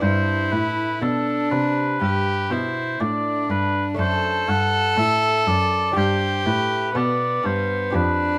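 A serene, flowing baroque-style sonata movement at 61 BPM in G major, where a rich, gut-string violin carries the melody up front alongside a vintage-toned oboe second line, a delicate, fingerpicked lute with double strings sits in the background, and a nasal, distant bowed cello holds the bass, all in light reverb.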